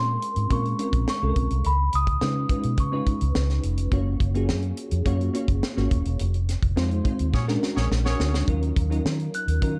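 A straight 4/4 groove at 105 BPM drives this slick, bittersweet slice of polished 1980s jazz-funk pop in Bb minor, cut from a longer piece. The tight funk drum kit enters at 0.2 seconds and sits up front with a high-tuned snare, hi-hat and a tight kick in a small, natural room. Also up front, the vintage muted fingered electric bass is the loudest part, its foam-muted, round tone anchoring the low end. A bell-like FM electric piano with ensemble chorus and a sparkling, fast-attack tone carries the chords, moving from Bbm9 through Db9, Gbmaj7 and Fm7 to Bb7alt and Ebm9, while a delicate celesta with tape echo plays a sweet, airy melody at the start and returns briefly near the end. A clear, punchy horn section in octave doubling adds a tight second line from 7.3 seconds, during a band accent and drum fill, sitting low in the mix, all framed by light studio reverb and a dark production.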